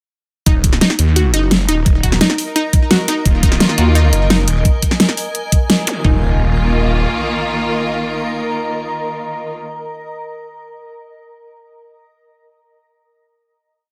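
Tight, up-front technical drums, with a knocking electronic kick, a huge snare and bright hats, drive this dark, mechanical, futuristic drum and bass piece at 172 BPM in Eb minor, where a swirling, saturated phased saw bass plays chopped phrases with sidechain pumping under a punchy, detuned pluck arpeggio in a 5-step loop drifting against the bar, a cloudy granular pad arrives at 2.0 s, lush bowed symphonic strings add sustained chords from 3.3 s, and background zaps and impacts mark the move from the drop to a final chord at 6.0 s.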